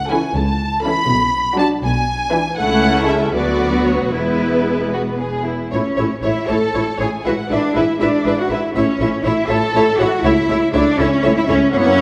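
A quick classical-period movement for string orchestra in 6/8, lively and graceful, taken with a rubato feel and cut from a longer piece. The violin section carries a smooth, even melody with a silky top, while a second violin section adds an expressive line with soft attacks. Beneath them a distant viola section with portamento fills in the accompaniment, a close, rich cello section anchors the bass, and a warm double bass section joins the bass from afar, all bowed with vibrato in a wet recital-hall reverb as the music moves into its second section at 5.7 seconds.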